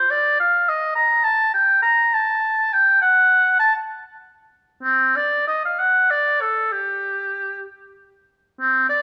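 A roomy recital hall reverb surrounds a lone oboe, heard up front with a light vibrato in this brief passage of about 9 seconds, cut from a longer piece. The baroque-style classical fantasia moves in a rubato 6/8, its grave yet flowing line ranging from C4 to Bb5 with the oboe playing solo throughout.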